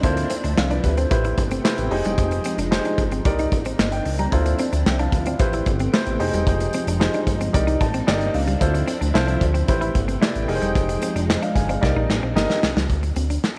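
Early-eighties boogie funk at 112 BPM in a straight 4/4, this slick, late-night excerpt cycles through minor-ninth chords on Dm9, Am9, Fm9 and Cm9 before settling on Csus2. A punchy, up-front acoustic drum kit with handclaps and a pumping room sound plays alongside a glossy, retro chorused synth bass, while a dark, mellow grand piano comps up front and a silky string machine holds slow-attack chords in the background. A clean, picked electric guitar riff with analog chorus sits low in the mix from 0.2 seconds, the piano adds a fill at 7.5 seconds, and a drum fill arrives at 11.8 seconds, all within light reverb.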